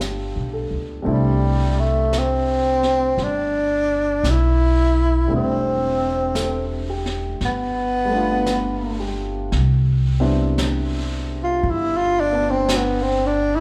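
A slightly detuned, woody upright piano, a thumpy, dark pizzicato upright bass up front and a distant, roomy brushed drum kit with a high-tuned snare open this romantic, late-night jazz ballad excerpt at a slow, swung 57 BPM in C major, before a breathy, close-miked tenor saxophone with mellow vibrato enters at 1.1 seconds to carry the melody and takes an intimate, whispered solo from 9.5 seconds, heard in the moderate reverb of a recital hall.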